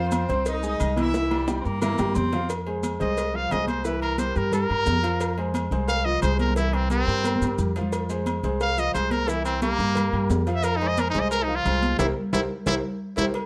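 Driving at 177 BPM in a straight 4/4, this passionate F-minor salsa excerpt opens with a roomy, loose horn section and a brief, distant baritone saxophone line before a punchy, vibrato-laden trumpet takes the solo from 3.0 seconds, carried over a growly, thumpy pizzicato upright bass up front, an intimate baby grand piano with audible action noise, and background congas, cowbell and bongos, ringing agogo bells and timbales, and grainy maracas, in a dark production with moderate studio reverb.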